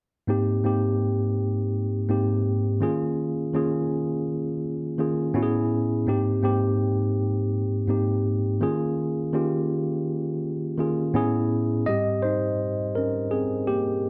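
Warm and lush, this short soul excerpt moves at an unhurried 83 BPM in 4/4 with a gentle swing, set in Ab major. A lone tine electric piano carries everything from 0.3 s, its worn, slightly out-of-tune tone sitting clean and up front. It cycles through Abmaj7, Eb9sus4 and a brief Amaj7 before the Abmaj7 returns, all inside a moderate echo chamber reverb. The piano steps into a short solo passage at 11.9 s.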